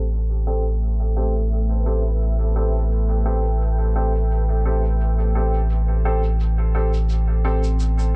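Ambient dub in A minor at 86 BPM with a lightly swung 4/4 feel, this deep, hazy fragment of a longer piece rests on a single Am7 chord, carried by a moody, detuned dark pad with chorus and its own reverb, and a round, soft sub bass held up front. Woody, slightly worn upright piano stabs enter at 0.5 seconds, passing through a filter sweep and dub echo, while a brushed acoustic shaker with echo sits quietly in the background. At 7.4 seconds a gentle, warbling FM synth bell adds brief arpeggios with chorus and phaser, all within a dry, echo-heavy, low-pass-filtered mix.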